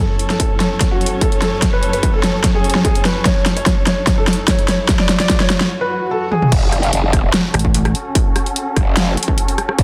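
A felt-muted upright piano carries a soft, intimate melody with audible action noise and digital delay over bowed, vibrato-rich strings and a faint, cloudy granular pad, opening this menacing, chaotic excerpt of heavy wobble dubstep in F# minor at 147 BPM in half-time. Layered electronic drums with a huge snare, bright hats and a distorted kick build toward a brief break at 5.7 seconds, while the strings pump under sidechain and a low-pass filter and very quiet risers rise behind them. At 6.5 seconds the drop lands with an impact and a detuned, growling bass run through a formant filter, chorus and overdrive, joined briefly at 7.5 seconds by a heavy, pulsing pluck wobble bass in a dense, heavily limited mix with light reverb.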